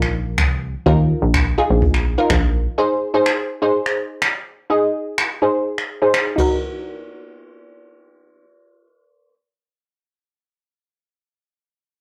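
A rough rehearsal-room sound with tube saturation and a moderate studio reverb frames this bittersweet yet confident dance-pop excerpt, moving at 125 BPM in a straight 4/4 in Eb dorian. A glassy wavetable pluck carries the accompaniment throughout, its crystalline, detuned digital tone thickened by chorus and a noise layer, with a low-pass filter sweep running over it until about 6.6 seconds. Beneath it, a punchy, funky analog bass built from sawtooth, pulse and sine waves plays only until 2.7 seconds. A jazz brush drum kit sits up front with a small-room acoustic character, a boomy kick, dark cymbals on the ride, and finger snaps, dropping out at 6.5 seconds. The chords pass from Ebsus2 to Ab and settle on Ebm as the music moves into its second section, leaving the pluck to carry the close.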